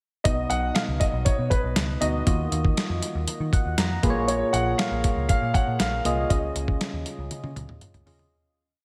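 Nostalgic and moody, this short 1980s-style pop piece sits entirely in a pre-chorus, with a dark, mellow baby grand piano tracing a motif-based melody through slapback echo and delay over soft, round electric-piano-like synth keys that push the chords in drop2 voicings with chorus, grace notes and a short fill at 3.3 seconds. Beneath them, a foam-muted, amped electric bass plays a syncopated pop-funk line with ghost notes and chromatic approach notes, while a gritty, compressed soul sampler-style drum kit stands up front with a thumpy kick and a big backbeat. A concert hall reverb gives the mix a big arena sound, and the piece fades out from 6.3 seconds as the drums play a fill at 7.3 seconds.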